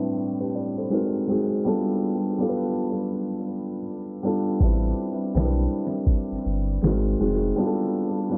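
A soft, felt-muted upright piano with audible action noise plays Am11, G#9 and G9 chords through low-pass filtering and tape echo in this hazy, melancholic lo-fi hip hop excerpt at 81 BPM with a swung 16th feel, joined at 4.6 seconds by a round, deep sine sub bass and a muffled, pitched-down sampler-style drum kit with a thumpy kick, fat overdriven snare and hi-hat, all set in an echo-heavy mix with vinyl crackle, light reverb and a filter sweep.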